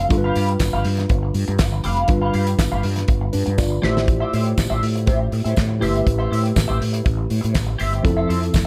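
A round, punchy fretless bass sits up front and anchors this short, sultry disco clip, its dark, direct tone carrying a driving groove in straight 4/4. Beside it, a damped 70s drum kit with a fat snare, tight kick, handclaps and hi-hat sounds dry and close, its top end rolled off, and a brief drum fill arrives at 3.6 seconds. A clean, picked electric guitar with wah and analog chorus adds compressed, warm accompaniment in a higher register, while a worn, slightly out-of-tune tine electric piano fills the middle with mellow support. A jingly tambourine joins at 0.6 seconds and stays tucked in the background. The harmony moves from G7 to Am7 and then to Fmaj7 under a light reverb, and the clip is cut from a longer piece.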